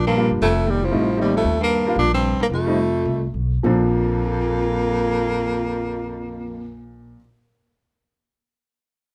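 The recording sits in a moderate club reverb with a short decay, giving this brief cut from a longer performance an intimate, close feel. It is small-group swing and bop jazz in Bb major, tuned slightly high at A4 = 444 Hz, moving in 4/4 at a brisk 198-233 BPM with swung eighths. The tempo slows between 1.4 and 3.6 seconds before the music settles into a new passage on a Bbmaj7 chord. A breathy tenor saxophone carries the melody up front, its subtone, vibrato and scooped notes set in plate reverb, while a warm baritone saxophone plays a second line with vibrato from a more distant, roomy position. An acoustic upright bass with steel strings is plucked in a woody, dark register near the front, and a clear baby grand piano with short sustain enters at 0.2 seconds to accompany the harmony through F7, Eb and F. The mood is playful and sophisticated.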